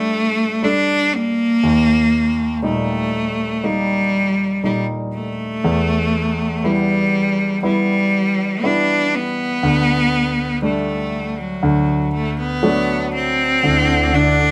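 Emotional and hopeful, this slow pop ballad excerpt at 60 BPM sets a clear, close solo cello singing the melody with vibrato over a present, polished baby grand piano, moving through chords from Gsus2 to Dsus4 and D before a soft, flute-like tonewheel organ with slow rotary speaker and a lush, distant cello section on a low bass note join at 13.6 seconds on a closing Dadd9, all in a moderately reverberant room where the band plays live together.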